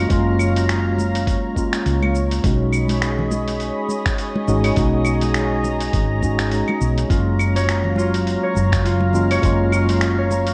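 A mellow, delay-touched tine electric piano, a lush detuned unison pad shimmering with chorus, and a round, dark fretless bass carrying analog chorus open this relaxed, smooth sunset chillout excerpt, joined almost at once by a gritty, compressed sampler-style soul kit of cabasa, claves, finger snaps and hi-hat, a thumpy electronic kick and very quiet close-miked congas, all swaying on a gentle sixteenth-note swing over F#maj7 and B69 chords, until a ringing, thumb-plucked concert harp with delay enters with arpeggios at 7.1 seconds, the whole mix wrapped in light reverb and the worn, warbling pitch drift of old cassette tape.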